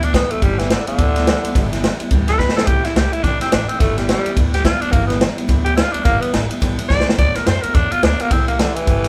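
Set in a moderate stone-room reverb with the band playing live together, this rollicking, retro rockabilly clip from a longer piece swings at 213 BPM in G major over G6, C6 and D6 chords, as a gritty, up-front tenor saxophone solos with vibrato throughout while a bright, picked steel-string acoustic guitar, a woody, thumpy pizzicato upright bass and a vintage drum kit with a punchy kick, ride cymbal and snare drive it along, the drums adding fills at 2.4 and 6.9 seconds.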